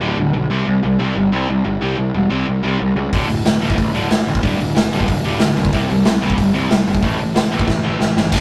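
Energetic, upbeat punk rock cut from a longer piece, with a bright, double-tracked distorted guitar riff and a growly, fuzz-drenched picked bass opening together over power chords before a raw, gritty garage drum kit in a pumping stone room enters at 3.1 seconds, its punchy kick and medium-tuned snare up front, and plays a fill at 7.7 seconds, all captured with light reverb in a rough rehearsal-room sound.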